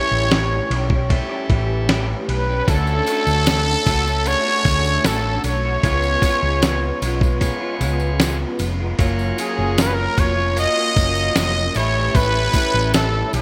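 A light reverb and a bright 1980s-style digital sheen frame this short cut from a longer indie and bedroom pop piece, nostalgic and sunny at a relaxed 76 BPM in straight 4/4. Up front, a growling trumpet carries the melody with a raspy, brilliant tone and light vibrato, colored by analog chorus and digital delay. Beneath it, a bright tonewheel organ sits in the background, lightly overdriven through a stopped rotary speaker with a cassette-tape tint, while an electric guitar through a small old amp adds a dark, slightly broken-up, lo-fi fingered part with ensemble chorus and a warbly pitch drift. A round, punchy hollow-body bass anchors the low end, and a dusty soul sampler-style kit brings a thumpy kick, fat snare and ride cymbal with a gritty, compressed character. A jingly tambourine joins at 2.7 seconds, close and dry in the background, as the harmony moves through A7, Dmaj7, C#7 and F#maj7 before returning to A7.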